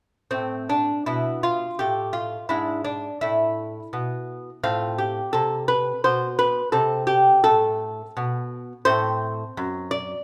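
Lightly reverberant and intimate, this short cut from a longer classical piece offers a grave, introspective baroque-style dance in triple metre for solo lute, its delicate fingerpicked gut strings, doubled courses and occasional octave-paired strings sitting up front as it moves with a free, rubato pulse from 0.3 to 10.2 seconds.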